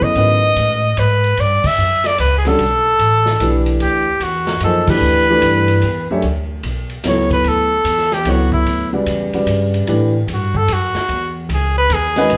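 This modal jazz waltz, cut from a longer piece, opens with the full quartet together: trumpet, baby grand piano, upright bass and a vintage drum kit, all swinging in an open, hypnotic three. The whole band hits accents at 1.6 and 4.8 seconds, and at 6.2 seconds the trumpet moves into a solo that carries through to the end. Out front, the trumpet is clear, punchy and forceful, with a light vibrato and scooped notes in a vintage jazz style. The warm, natural piano sits up front with the chords, falling away near the close apart from one brief touch, while the woody pizzicato bass holds the low end beneath it. The drums play further back, with dark cymbals, a medium-tuned snare, a tight kick and a rolled-off top, and a wet, large studio reverb places the band playing live in one room.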